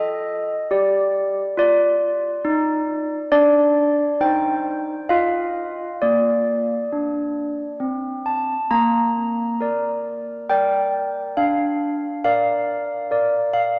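A wet church reverb surrounds this short excerpt, letting each stroke ring on in a long, cavernous tail while the bells themselves sit up front. It is a solemn, wintry classical tune for a solo set of handbells in an unhurried triple metre with a straight feel. The bells, struck with medium clappers, sound clear yet dark and smooth, spanning from Bb3 up to Bb5. A lone high note opens the passage before the harmony gathers through a sequence of chords, settling on a Bb major chord at 6.0 s. A second phrase begins at 8.7 s and carries the piece on until it is cut off at 13.8 s.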